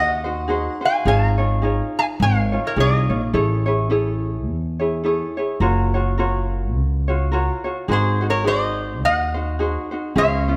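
Languid and dreamy, this short Hawaiian excerpt drifts along on a gently swung 4/4 feel, cut from a longer piece. A lap resonator guitar carries the melody with slide and fingerpicks, its metallic, nasal voice sitting up front. It sings from the start until 3.2 seconds, falls away, then returns at 7.9 seconds. Beneath it, a light, fingerpicked ukulele supplies accompaniment throughout. A pizzicato upright bass on steel strings gives a woody, growly, thumpy foundation, also up close. The harmony glides from Ab7 through Dbadd9/Ab, Amaj7 and Gbmaj7 before circling back to Ab7, all bathed in the moderate bloom of a scoring-stage reverb.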